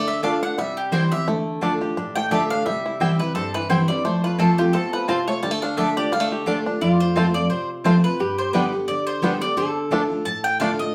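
A wet studio reverb places the band a little back in the room, lending this short cut from a longer bluegrass piece a lonesome, haunting air. It moves at 174 BPM in 4/4 with a light swing on the eighths, sits in D dorian, and circles through Dm, C and F before turning to G late on. An up-front mandolin carries the melody with a woody, double-string tone, while a second, brighter mandolin adds picked stabs. A full-bodied dreadnought steel-string guitar, also close and present with audible finger squeak, plays the accompaniment, and a twangy, percussive banjo picks out arpeggios with fingerpicks. From 6.8 s a lap resonator guitar joins with a quieter second line, its slide giving a metallic, nasal edge.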